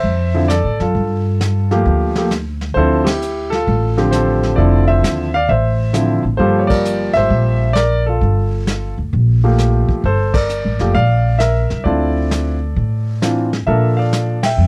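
Cool and swinging, this jazz piano trio passage in D minor moves at 132 BPM in 4/4, with a firm swing on the eighth notes. A clear grand piano carries the melody from D3 up to G5, its polished, intimate tone sitting up front with long sustain and a touch of audible action noise. Beneath it, a pizzicato upright bass with steel strings gives a woody, up-front foundation between F1 and Bb2. A vintage brush drum kit sits a little lower in the mix, its dark cymbals, medium-tuned snare and tight kick heard through brushes with a rolled-off top, as in a small room. The harmony moves between Dm9 and Gm9 before landing on Bbmaj7 at 13.7 seconds, while the whole band hits accents at 3.0, 6.6, 10.3 and 14.4 seconds. The sound is dry and close, with little reverb, like a 1970s studio session, and the passage is cut from a longer piece.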